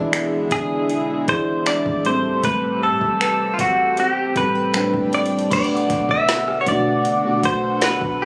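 A mellow, chorused FM electric piano, a lush detuned pad, a small fingerpicked nylon-string guitar and a deep, round 808-style bass open this moody, longing contemporary R&B excerpt, with a smooth electronic kit of soft kick, woody snare, metallic hats, finger snaps, rim click and crash settling in beneath. At 0.5 seconds a bright, twangy clean electric guitar, recorded direct and placed up front, carries the melody over chords moving from E7 through Am9 and Am11 to Bm7. The nylon guitar drops away at 5.6 seconds as a very quiet, mallet-like synth pluck with phaser adds texture, all in a light reverb with a roomy, phone-captured ambience.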